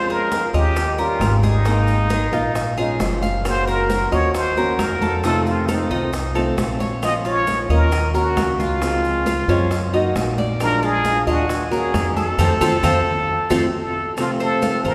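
A church's long, wet reverb surrounds this danceable, sultry stretch of Cuban son and guajira, cut from a longer piece. Up front, a close-miked trumpet with a plunger mute carries the solo melody in a jazz style, its muted wah-wah tone bright and pointed. Beneath it, a dark, boxy parlour guitar is fingerpicked with audible finger squeak, while the Cuban tres adds metallic arpeggios from its double strings, some octave-doubled. The upright bass sits forward too, a thumpy, woody pizzicato on steel strings. In the background, hard-handed congas, thin-skinned, compressed and saturated, are joined by tight, high-tuned bongos, grainy maracas and very quiet claves, the bongos and maracas distant in a large room and the claves in a small one. Near the close, the band hits an accent from 12.4 seconds, capped by a drum fill at 13.7 seconds.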